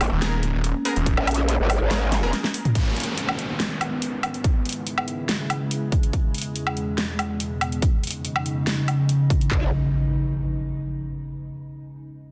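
A dense, heavily limited modern mix with light digital ambience opens on a half-time heavy wobble dubstep drop at 142 BPM in G# minor, aggressive and menacing, as a growling, formant-filtered growl bass and a snarling, detuned sawtooth bass with a moving notch hit up front while a bright, orchestra-hit-like synth stab sits in the background with dub echo. Two punchy, tape-warm electronic drum kits drive it, one carrying hi-hat, snare, toms and woodblock, the other handclaps, kick and toms, with a huge snare and metallic hats. An evolving, morphing wavetable pad with chorus and sidechain pumping sustains chords from the very start, and a drum fill at 2.3 seconds leads into a passage where that pad moves from G#m through C#m and E. A downlifter and impact arrive at 2.8 seconds, and the growl bass returns briefly at 9.5 seconds as the effects carry this excerpt out.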